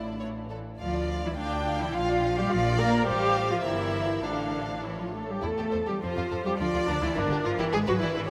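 A quick, stormy classical-period movement for string orchestra in D minor, moving at 104 BPM in 2/4 with a dramatic, rubato push, cut from a longer piece. The first violins carry the melody with rich, expressive vibrato, while the second violins trace a warm sul tasto line with gentle attacks. Up front, the violas supply a smooth-topped accompaniment over an even cello bass and close, rich double basses, all bathed in a cathedral reverb that fills a vast, echoing space.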